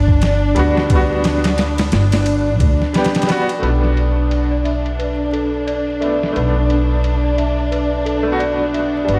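A gritty, pitched-down boom bap drum kit with a thumpy kick and filtered cymbals anchors this dark, cinematic trip hop excerpt at 88 BPM in B minor, swung on the sixteenths, beside a woody pizzicato upright bass and a lush, bowed string section roughened by vintage sampler grit. A brilliant upright piano adds tremolo and tape echo over chords moving from Gmaj7 to Bm7, and at 3.6 seconds a delicate, bell-like celesta enters with filtered arpeggios under a filter sweep. The dreamy mix sits in plate reverb and vinyl crackle.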